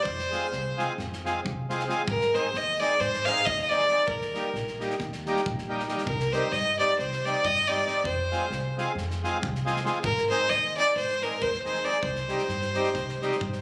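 Balkan folk in the manner of a wedding band, this fiery, restless excerpt in C minor drives along at 271 BPM in a straight 9/8, with a smooth, bowed fiddle carrying the melody up front with light vibrato over a reedy, full accordion, a woody, thumpy pizzicato upright bass on gut strings and a loose acoustic drum kit with punchy kick and medium-tuned snare in a pumping small room, all heard through concert hall reverb as if captured on a phone, while the chords move from Fm through Ab and Eb to Cm.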